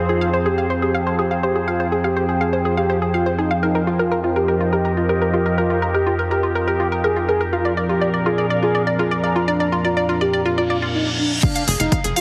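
An expressive synth lead carries the melody from the start, smooth and dark with vibrato, 12-bit sampler grit, subtle chorus and digital delay, over a melancholic, cinematic melodic techno passage in F dorian at 123 BPM, cut from a longer piece. Beneath it an evolving wavetable pad holds sustained chords that morph and warble, while a round, bright analog pluck spins arpeggios through chorus and delay, all pulsing with sidechain pumping as the harmony moves from Fm to Ebadd9/F to Bb. In the background a resonant drone with moving overtones sits low until 10.9 s, alongside a nostalgic, lo-fi tape-like pad, detuned and mellow. A filter sweep runs across the first section and a reverse cymbal rises into 11.4 s, where an overdriven, punchy kick and a layered kit with crash and smooth hi-hats arrive as the chords return to Fm, followed moments later by a tight, driving sequencer bass with tube saturation. 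The mix is heavily compressed, radio-like and set in a lush hall reverb.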